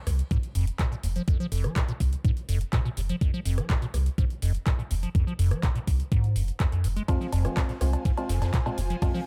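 A raw, trippy acid house cut in F minor at 124 BPM opens at 0.1 s with a squelchy, resonant acid bass riff running through phaser and cassette-tape grit, a thick tube-saturated sub bass pumping under sidechain, and an analog drum machine with metallic hats, cowbell, handclaps, rim clicks and shaker. An overdriven, thumpy electronic kick lands up front at 0.3 s, and at 7.1 s a hollow, percussive organ stab with lush chorus and dub echo arrives alongside a smooth, bowed studio string section with vibrato in the background and a very quiet big-room rock kit of snare, hi-hat and bright ride, all set in a small room reverb.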